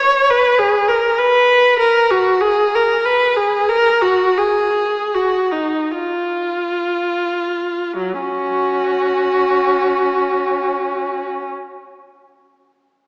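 Heard through a small-speaker sound in a church or concert hall with a reverb tail of 2.3 seconds, this nostalgic, lyrical classical fragment for unaccompanied viola moves freely in F# major at a rubato 23 to 57 BPM, slowing through the first 8.0 seconds as the single rich, up-front bowed viola sings with smooth, even vibrato from F#3 to C#5 before falling silent at 11.5 seconds.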